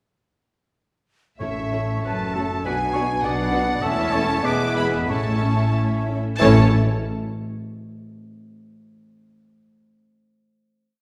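At 1.4 seconds the orchestra enters in a short, lively and cheerful classical-period movement in two, played with a flexible, rubato feel. A rich, expressive violin section carries the bowed tune with vibrato and a soft attack. The airy silver flute doubles it in unison and in sixths, while a second, very quiet violin section and the lush, distant violas fill in repeated-note chords that follow the rhythm of the tune. The clear oboe adds a counter-melody, and the smooth-topped clarinet and roomy bassoon hold sustained chords in the background beside a mellow, tight French horn section that enters at 1.7 seconds with short accented chords. Cellos set the bass on the beats with passing notes, doubled by the double basses, and soft-mallet timpani strike single round strokes at the opening and again as the music settles onto its final chord at 6.4 seconds. The whole ensemble is heard from further back in a reverberant scoring stage, which gives the short piece a spacious glow.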